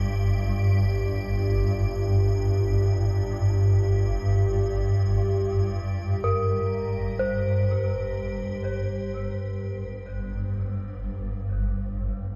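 Drifting in free time, this ominous, unsettling dark ambient drone is cut from a longer piece and rests on an up-front swarming low drone, detuned and granular, that evolves tensely beneath everything else. A band-limited bronze metallophone, struck with a wooden mallet, fades in over the first 8.7 seconds with ringing arpeggios trailed by dub echo and shimmer reverb. A crystalline, icy pad, bright and chorused, hovers on a single high note until 8.7 seconds, when the harmony settles onto a suspended chord in an echo-heavy mix.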